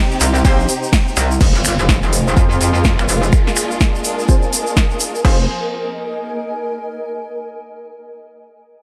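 A metallic, saturated FM wobble bass sits up front in this bouncy, aggressive bass house cut, pumping against a punchy layered kick and a big-room dance kit of crisp hats, snare, finger snaps, crash and ride re-recorded in a large room. Dark, bowed symphonic strings hold lush sustained chords while a bold, detuned sawtooth stab with a filter sweep, delay and reverb hits in the background alongside a grainy vintage tube shaker, and a very quiet electronic impact arrives at 1.4 s as the harmony moves from Cm to Fm. From 2.5 s a cloudy, mellow granular pad drifts in and lingers until 7.1 s, after the other parts have fallen away.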